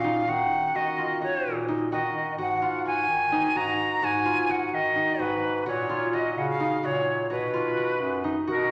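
Hopeful and shimmering, this short contemporary instrumental excerpt moves in a straight 7/8 at 256 BPM counted in eighths, with a breathy, bright jazz flute singing the melody with vibrato over ringing, fingerpicked concert harp arpeggios and a clear, vintage-toned bass clarinet bass line, all up front in a wet recital-hall reverb with vinyl crackle, as the harmony moves from D#madd9 through G#7(no3) and F#6/A# to B.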